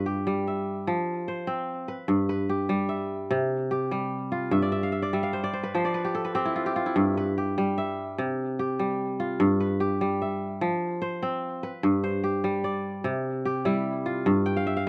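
Recorded outdoors, this dry, close take has the kora placed up front, its top end rolled off to a warm glow. It is a short excerpt of West African traditional music, a solo kora piece in 12/8 at 98 BPM counted in dotted quarters, set in G mixolydian with a hypnotic, warm mood. The fingerpicked strings ring out crisply across a span from G2 to G5, circling through G, F and C harmonies with a cooler suspended colour over G along the way. A fill decorates the line from 4.5 to 7.0 seconds, and at 11.8 seconds a new section begins on the same G, C cycle. A last brief fill arrives at 14.5 seconds, just as the passage closes on a rootless suspended chord over G.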